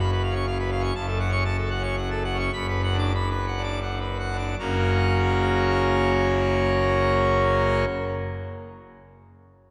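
Majestic and stormy, this classical organ toccata in 3/4 is cut from a longer piece and features a solo pipe organ on full organ, its brilliant mixtures and romantic voicing placed up front and spanning F#1 to D6. The tempo moves between 73 and 126 BPM, slowing from 0.2 to 4.6 seconds as the harmony travels through C#7/F#, F#m and Bm/F# before landing on F# major at the start of the second section. The organ stops at 7.8 seconds, and the sound is bathed in a wet church reverb with a 3.4-second decay.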